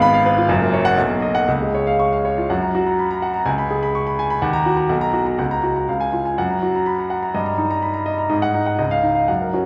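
In a rubato 2/4 at 124 BPM, this brilliant, heroic virtuoso piano study in F# major unfolds as a short cut from a longer classical work, with a clear baby grand piano playing solo across its full 9.7 seconds and spanning F#1 to C#6. The polished, up-front piano tone carries a long sustain into a wet recital hall reverb, while harmonies move from F# through Bmaj7 and C# before a new section begins at 2.5 seconds, passing through D#m, F#/C# and D#/G to close on C#add9.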